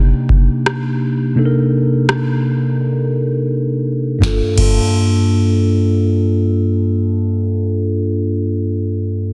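A mellow tine electric piano opens this moody, sensual contemporary R&B excerpt, its clean, direct chords on Cm9 given a gentle phaser shimmer, before a booming analog drum machine joins at 0.3 seconds with a deep kick, crisp snare with soft clipping, rim clicks and crash cymbal. The harmony moves to Gm9 at 4.2 seconds, and the drums drop out at 4.8 seconds, leaving the up-front electric piano to play alone until the clip ends at 9.3 seconds. The dry, dense, heavily limited modern master keeps both parts close and present.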